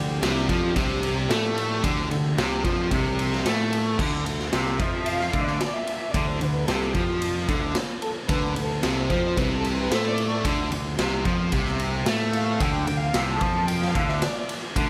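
A straight 4/4 pulse at 111 BPM drives this dark, mysterious psychedelic rock passage in D dorian, cut from a longer piece and resting on a D minor chord. A double-tracked, compressed fuzz guitar with phaser plays a distorted, up-front riff over a round, punchy overdriven bass, while a raw garage drum kit enters at 0.2 seconds with a boomy kick, gritty saturated snare and crash and ride cymbals in a pumping stone room. Beneath them a dark chamber string section holds nasal, reedy, gut-string chords in period style, taking a bowed solo from 4.0 seconds inside light small-room reverb.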